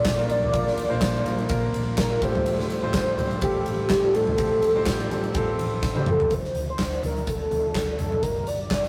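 Warm and anthemic, this short piano-driven pop passage moves in a lightly swung 4/4 groove. A velvety synth lead with a smooth, sustained sawtooth tone and chorus carries the melody throughout, riding over a clear concert grand piano with deep bass, long sustain and audible action noise. A very quiet tonewheel organ adds round, dark sustained chords through a slow rotary speaker, while a foam-muted fingered electric bass sits dark and round in the background. The huge arena drum kit is up front, with a punchy kick, bright cymbals, handclaps and toms in a pumping room, and a faint, jingly tambourine adds a compressed shimmer. A drum fill at 5.8 seconds leads into a new section at 6.3 seconds, where the piano and organ drop out and the lead, bass and drums carry on. The whole piece has the rough, saturated feel of a rehearsal-room recording, with moderate reverb.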